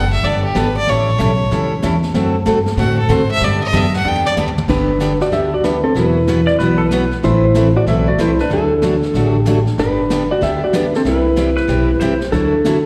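A swinging 188 BPM western swing groove in G major opens with a clear, earthy bowed fiddle solo over picked, full-bodied acoustic guitar, woody pizzicato upright bass and a brushed drum kit with dark cymbals, until a drum fill at 4.0 seconds hands the melody to an up-front, dark lap steel guitar with volume swells and slide at 4.7 seconds, while a bright, twangy pedal steel adds brief second-line phrases. The fiddle, guitars and pedal steel are set in plate reverb and slapback echo, the drums carry slapback echo, and everything sits within a moderate club room heard through a live venue's PA in this down-home excerpt cut from a longer piece.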